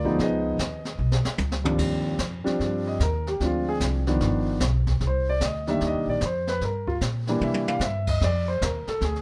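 Warm and playful, this brief excerpt from a longer jazz piano trio swings at 149 BPM in Eb major, with an up-front concert grand carrying the melody over deep bass and taking a solo from 1.8 seconds, a woody, thumpy pizzicato upright bass, and a brushed drum kit with dark cymbals, a high-tuned snare and boomy kick adding fills near 1.0 and 7.4 seconds, all in light reverb through rich chords such as Ebmaj13, G7b13 and Cm9.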